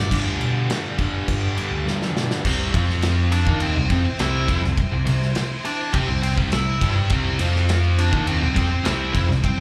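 A loose indie drum kit sets a straight 4/4 pulse, its tight kick and medium-tuned snare sitting up front beneath dark cymbals in a pumping small room, and a fill from 1.9 to 2.5 seconds tips the groove into the next section. This short cut from a longer piece of quiet-loud alternative rock feels bittersweet and restless. A growly, punchy overdriven bass anchors the low end, while a bright, double-tracked semi-hollow guitar grinds out an overdriven riff, shadowed further back by a compressed fuzz guitar playing its own riff. Over the top, a dark octave-fuzz lead guitar carries the melody with a slapback echo. A very quiet vintage string machine adds lush sawtooth chords with a soft attack, colored by phaser, ensemble chorus and a moving notch. The whole band comes across as a live gig heard through the venue's PA, wrapped in club reverb.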